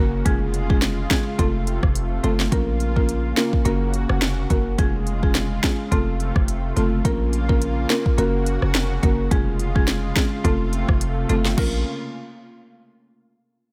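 A buzzing, woody marimba with a dry, airy tone opens this hypnotic, bouncy dancehall excerpt in Bb minor, sounding together with a lush, detuned sawtooth pad that pumps with sidechain and shimmers with chorus, and a punchy, heavy 808-style bass sitting up front. At 0.3 seconds an electronic afro-pop kit joins with a deep kick, sharp snare, smooth hi-hats, rim clicks and crash cymbal, driving a swung groove at 106 BPM. The chords cycle through Db/F, F, Bbm and Gb in a digital ambience, and the piece is cut from a longer work.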